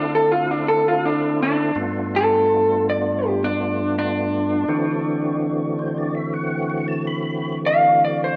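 A straight 4/4 pulse at 82 BPM carries this laid-back, swaggering blues in D mixolydian, tuned to A4 = 445 Hz, where a dark, slightly broken-up, lo-fi electric guitar through a small old amp plays an up-front picked solo bathed in spring reverb, while a fat, percussive tonewheel organ with key click, overdrive, chorus vibrato and a slow rotary speaker accompanies over D7sus2, G9 and D9 chords and adds a fill from 5.4 to 7.6 seconds.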